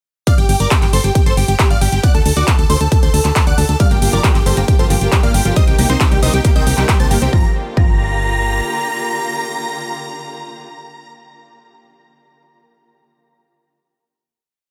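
A dry, close-sounding uplifting trance piece in G minor at 136 BPM, emotional and bittersweet, launches its drop at 0.3 s with a huge, euphoric detuned supersaw lead playing a repeating sixteenth-note riff in thirds and sixths over a pedal note, doubled an octave higher by a catchy square-wave unison lead with a cassette-tape colour, both pumping with sidechain and trailing delay, above a punchy four-on-the-floor kick, a big-room kit of claps and metallic hats, and a round, rolling FM bass; at 3.8 s a chorused analog pluck adds a six-step arpeggio drifting against the bar, and soon after a distant, vibrato-laden chamber string section sustains dark chords, before the drop gives way at 7.3 s to a final Gm7 chord.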